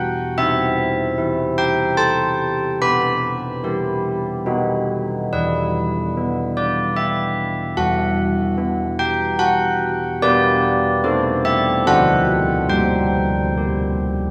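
In a straight 3/4 at 73 BPM, this solemn, wintry classical bell tune in E minor, cut from a longer piece, is played by a solo carillon whose bronze tone, minor-third overtone and worn iron clapper sit close and up front, ringing through a wet church reverb as the harmony passes from Am/C through Em/B and B to E5, then G/B, Am7/C and D7 before arriving at a bare, unharmonised close at 12.7 seconds.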